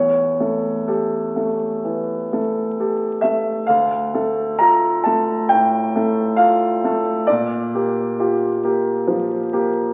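A concert grand piano, warm with a deep bass and set up front, carries this wistful, melancholic romantic nocturne alone, moving in D minor at 61-69 BPM in 4/4 with a free, rubato feel and tuned to A4 = 443 Hz. Across this short cut from a longer piece, the harmony passes from A7/E to Dm at 3.7 seconds and on to Bb6 at 7.3 seconds, spanning D2 to Bb5. A wet recital hall reverb surrounds the instrument, while the crackle of a very old 78 rpm record lends the sound an aged patina.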